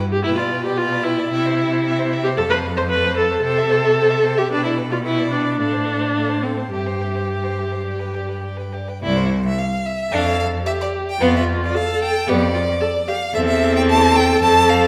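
This quick classical-period string quartet movement runs at 111 BPM in 4/4 and C major, with a spirited, cheerful mood and a flexible, rubato feel. The first violin carries the melody from C5 to C6 with a rich, focused, close tone and vibrato. The second violin plays a smooth, even second line beneath it. The viola, the most prominent part in the balance, enters at 0.1 s with accompaniment, bowed with a focused sound and a silky top. The cello sits up front on the bass with a clear, vibrato-tinged tone. The harmony moves through G/B, C and F with inversions such as F/A and C/G, then shifts at 9.0 s into a second section built on C, Dm/F and C/E. A wet recital-hall reverb with a 1.4-second decay places the quartet in a resonant church or concert space, and this passage is cut from a longer piece.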